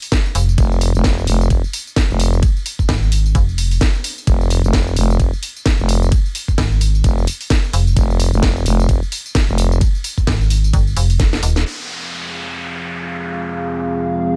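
Swaggering and gritty, this bass house cut at 130 BPM in F minor with a 16th-note swing opens on a drop where a knocking electronic kick and a garage kit of cracking snare, hi-hat, ride and tambourine, filtered and tape-tinged, drive two up-front FM basses: a growling, thick, overdriven one holding F1 and a metallic, digital, tube-saturated one, both pumping against the kick. After a drum fill, a dark, detuned analog pad with chorus and ring modulation enters at 12.3 seconds on an F minor chord under a filter sweep, while a downlifter falls away alongside it, all in a dry, close sound.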